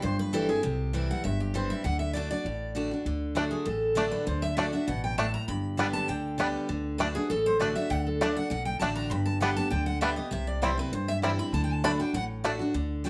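Lively and virtuosic, this bluegrass excerpt in straight 4/4 features a bright, full-bodied picked steel-string acoustic guitar taking a solo melody up front, backed by a second dreadnought guitar whose accompaniment carries an audible finger squeak, while a woody, thumpy pizzicato upright bass on gut strings holds down the low end. At 3.4 seconds a twangy, percussive banjo played with fingerpicks joins with arpeggios until 12.5 seconds. A moderate studio reverb gives the ensemble a natural room sound as the chords move through C, D and G.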